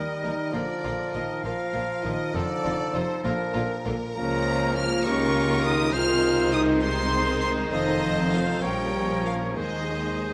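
A rich violin section carries the melody of this cheerful, lively classical-period movement for symphony orchestra, its bowed line smooth, close and shaded with vibrato as it climbs as high as F6. The music moves quickly in 6/8 at 66 dotted-quarter beats per minute with a straight feel, settling into Ab major from 4.2 s. From the opening, a clear oboe with vibrato and a clear clarinet in the background trace second lines. A dark bassoon supplies accompaniment, and a distant, roomy French horn section holds sustained chords. At 0.2 s the rest of the strings join: a second violin section on an inner line, a lush viola section in accompaniment, a warm cello section, and a smooth, even double bass section anchoring the bass. A moderate scoring-stage reverb gives the ensemble a spacious bloom in this short cut from a longer piece.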